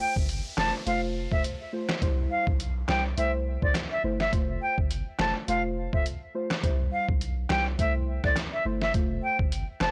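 Dry, gritty and close, this short dancehall cut at 104 BPM has a tough, sultry swing on the 16ths, built on a loop of F, C and Am. An up-front, reedy jazz flute carries the melody with airy vibrato and tape echo over deep, dark chord stabs that decay through a chorus and filter sweep, while an electronic downlifter sinks away by 4.3 seconds. From 0.2 seconds, a punchy sine sub bass with a pitch-drop attack joins a compressed, pitched-down trip hop sampler kit of thumpy kick, medium-tuned snare, rim click and hi-hat.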